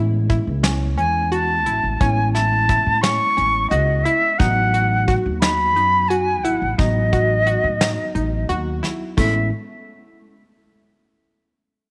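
An upright bass, a mellow, slightly out-of-tune tine electric piano and a round analog pluck with chorus open this driving, intricate progressive instrumental in 7/8 at 176 BPM in A lydian, with a soft brush kit joining at 0.3 seconds. The jazz flute takes the melody from 1.0 seconds, airy and expressive with vibrato and a crisp chiff, over woody pizzicato bass and punchy kick as the chords move from Amaj7 to B/A. Light reverb and small-room ambience frame this cut from a longer piece.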